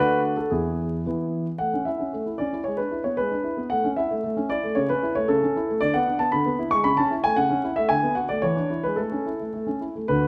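Set in a straight 2/4 at 113 BPM, this brief stretch of a classical-period piano sonatina in A major moves with a playful, elegant poise. A solo concert grand carries everything from 0.0 to 10.3 seconds, its tone warm, with deep bass and an up-front presence, ranging from D2 to C#6. After a short opening on D and E, the main passage settles on A at 1.6 seconds and moves through E7/G#, A/C# and Bm/D before reaching E7 and resolving to A at 9.0 seconds. A moderate recital hall reverb gives the instrument a sense of space, and a layer of vinyl crackle lends the sound an aged patina. The passage is cut from a longer piece.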